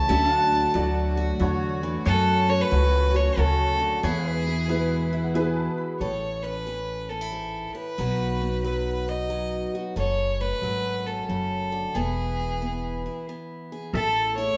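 A clear, smooth fiddle with light vibrato carries the heartfelt, down-home melody of this honky-tonk and classic country waltz in A major at 91 BPM with a swung feel, over woody pizzicato upright bass and a boxy, bright picked parlour acoustic guitar, while a twangy pedal steel and a rich, floating chamber string section hold sustained chords in the background until 6.0 seconds, a jangly, detuned upright piano adds a fill that ends at 6.0 seconds, and a brief break arrives at 13.3 seconds, all set back in a wet studio reverb.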